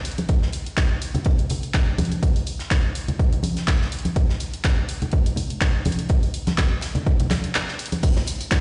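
A punchy analog drum machine opens this sunny, relaxed house excerpt at 124 BPM, laying down crash cymbal, handclaps, hi-hat and tambourine with a gritty overdrive and a light 16th-note swing, while a tight metal drum kit sits airy and polished in the background with hi-hat and a medium-tuned snare. Bright, close congas and bongos join at 0.2 seconds, and an up-front, overdriven electronic kick drives in at 0.3 seconds, carrying the groove to a short break at 7.5 seconds. The whole percussion-only passage sounds as if played on a big system in a bare room, with a large reverb and a dulled top end.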